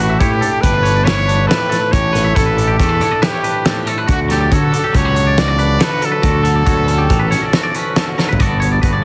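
Set in an odd 5/4 metre with a straight feel, this short math rock and midwest emo passage moves with an intricate, bright energy. An up-front trumpet with vibrato and a smooth top carries the pop-style solo melody, sitting in a plate reverb. Beneath it, one clean, compressed electric guitar picks a twangy accompaniment, while a second picked guitar sits in the background spinning arpeggios through lush chorus, plate reverb and tape echo. A fingered electric bass, overdriven into fuzz and placed up front, gives the low end a thick, gritty weight. The loose acoustic drum kit enters at 0.2 seconds with a fat snare, punchy kick, hi-hat and toms in a pumping studio room, and a drum fill at 8.2 seconds leads toward a new chord as the fragment closes, all heard through a heavily compressed, radio-like sound with light reverb.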